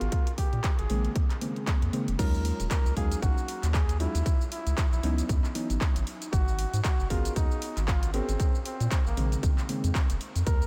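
Lightly reverberant and smooth, this late-night deep house cut features a veiled, raspy bucket-muted trumpet melody with tape echo and vibrato, riding a round, dark analog bass that pumps against an up-front, punchy overdriven kick and an equally overdriven house kit of crash, handclaps, hi-hat and shaker, while soft chorused chord stabs with analog delay enter at 0.9 seconds and a drop arrives at 2.2 seconds as the minor-eleventh chords move on.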